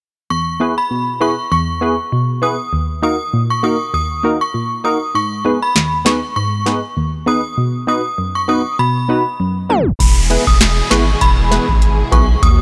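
Bouncy and sunny, this 99 BPM dancehall excerpt with a swung sixteenth feel opens on an inharmonic FM synth chime carrying the melody through ensemble chorus over dark, detuned wavetable chord stabs; a booming, overdriven analog drum machine with a deep kick, crisp snare and metallic hats joins at 5.8 seconds; and after a silent gap and a tape stop, the passage from 10.0 seconds brings in lush bowed strings with sidechain pumping, a thick saturated sub bass and an electronic downlifter, all in a dry, gritty hardware sound.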